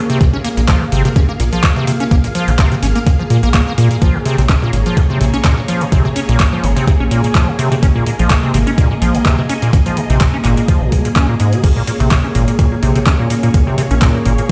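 Trippy and raw, this acid house excerpt moves at 126 BPM in 4/4 with a light swing on the sixteenths, sitting on a single Bb minor seventh chord in Bb minor. A squelchy, resonant square-wave acid bass riff sits up front with overdrive, analog chorus and digital delay, over a deep, round analog bass and lush vintage string-machine chords with ensemble chorus, all three pumping against the sidechain. An overdriven, thumpy sampler-style kick sits up front among the drums, while a booming tape-warm analog drum machine adds crash cymbal, handclaps and metallic hats, the whole mix played back on a big sound system in a bare stone room.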